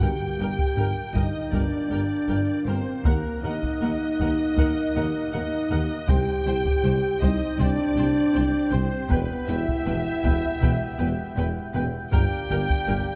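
A straight 79 BPM pulse in 4/4 drives this dramatic, heroic cinematic orchestral cue in G harmonic minor, where heavy-stick taiko ensemble hits lead the rhythm, timpani with hard mallets sound only in the opening 1.1 seconds, and a dark, distant French horn section holds prominent sustained chords beside a woodwind section with a smooth top, while a lush, focused symphonic violin section carries the melody in the background over a chamber violin second line, an even viola accompaniment, and a bass of cello section, bowed double basses and a mellow solo tuba, all moving through Gm, Ebm, C5 and Em in a warm, dark production with moderate scoring-stage reverb.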